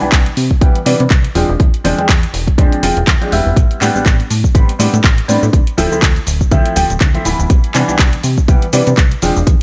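A punchy electronic kick drives this filtered disco house groove at 122 BPM in 4/4, with the sixteenths swung at 57%, while a house drum kit of handclaps, hi-hat and cabasa pumps against it from 0.1 seconds. The mood is sensual and groovy, and the passage is cut from a longer piece, with a filter sweep running across its 9.6 seconds. A plucky analog bass, funky and sawtooth-edged with a moving notch, a fast attack and decaying notes, ranges from D1 to C3 under the same low-pass filter and sidechain pumping. Up front, a clear baby grand piano plays accompaniment between E3 and G4, its worn, intimate tone carrying audible action noise, short sustain, phaser and vintage 12-bit sampler grit. The chords move from Cmaj9 through E7b9b13, Am11 and Dm9 before returning to Cmaj9. The drums sound layered and tape-warm, re-recorded in a small room, and light reverb surrounds the mix.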